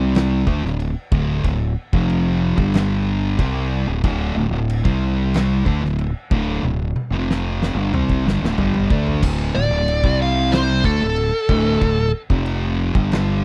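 A dry, close 1970s-style studio sound frames this sludgy, ominous stoner and doom metal in D minor at 92 BPM, where a double-tracked thick fuzz guitar grinds out the riff over a growly fingered electric bass with overdrive and an oversized low-tuned drum kit with a fat snare, punchy kick and dark cymbals that plays a fill from 6.6 seconds, before a compressed fuzz lead guitar with wah and slapback echo solos from 9.6 to 12.1 seconds.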